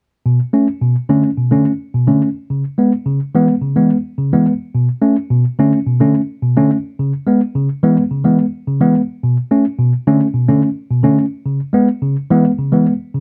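A dry, close recording with a 1970s studio sound and light reverb puts a worn, slightly out-of-tune tine electric piano up front, its clean tone coming through a combo amp. This short disco excerpt in B dorian moves at 107 BPM in a straight 4/4 with a driving, glamorous mood, the electric piano playing alone from 0.3 to 13.2 seconds in a range from B2 to C#4. Its chords alternate between Bm7 and C#m7 throughout, with a second section beginning at 9.2 seconds.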